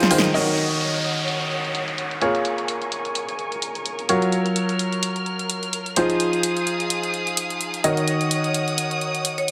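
A clear, woody upright piano drives this energetic, soulful piano house excerpt at 128 BPM in Eb dorian, playing a riff through tape echo over punchy, dry analog drum machine hi-hats and snare, both filtered, while a bowed chamber violin section holds intense, vibrato-rich chords under a filter sweep. A short drum fill and band accent open the passage, an electronic downlifter runs from 0.3 to 4.1 seconds, and the chords move from Ebm7 through Bbm7, Gbmaj7 and Fm7 back to Ebm7. At 9.4 seconds a hard-mallet marimba strikes a single boxy Db5, all set in a lush hall reverb.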